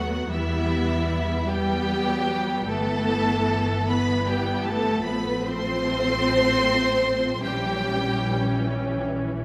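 Classical slow romantic string orchestra music, elegiac and solemn in a rubato 6/8, where a clear, intense and distant first violin section sings the high melody over a smooth-topped second violin line, rich violas, warm cellos and woody double basses, each section bowing with lush vibrato inside a wet concert hall reverb in this short passage cut from a longer piece.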